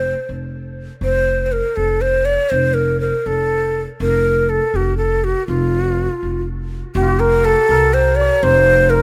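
A breathy, end-blown ney carries the melody with vibrato and a crisp attack, sitting up front beside a woody pizzicato upright bass on steel strings in this festive Persian modal ensemble excerpt in a straight 6/8. At 7.0 seconds, a hammered santur enters in the background with a shimmering, ringing second line. The rough home demo mix is bathed in studio reverb.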